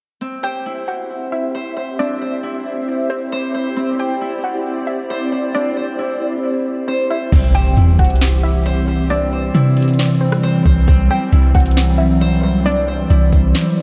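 A dreamy mix soaked in the long wash of a cathedral reverb opens this spacious, ethereal piece of atmospheric cloud-rap, cut from a longer track and moving at 135 BPM in 4/4 with a half-time feel. From the start a hollow, flute-like pad holds sustained chords up front, its ensemble chorus and sidechain pumping giving it a gently breathing shimmer, while a bright, ringing Celtic harp plays fingerpicked arpeggios through tape echo. Above them, a warbling, lo-fi pluck carries the melody with chorus and tape echo of its own, its tone dark and dusty. At 7.3 seconds a smooth, electronic R&B drum kit arrives with a soft kick, sharp snare, rim click, metallic hi-hats and crash, joined by a deep, round 808-style bass and a very quiet impact. The harmony rests on C from the opening, and a break lands at 13.5 seconds just before the excerpt ends.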